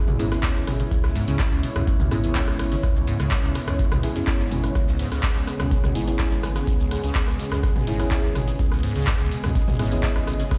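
A deep, tape-warm electronic kick drum leads this gritty, trippy acid house excerpt at 125 BPM in C# minor, landing at 0.4 seconds over a single C#m7 chord that holds for the whole clip. A punchy analog drum machine enters at 0.1 seconds with handclaps, hi-hat, rim click, shaker and toms, re-recorded in a small room, while a very quiet soft-mallet drum kit adds natural hi-hat and a fat snare with a hall sound from 0.2 seconds. Underneath, a round analog bass gives a dark, sustained low end with tube saturation and sidechain pumping, and a squelchy, resonant liquid acid bass riff sits in the background with a filter sweep, phaser, analog chorus and saturation. A deep mellow chord stab, nasal yet full-bodied, with a filter sweep, chorus and delay, punctuates the groove. Two background pads fill the upper space: a smooth, detuned analog pad on sustained chords and an airy, breathy pad with a noise layer, a moving notch and a long release, both with chorus and sidechain pumping. 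The mix is fairly dry, with the feel of a big sound system playing in a bare stone room.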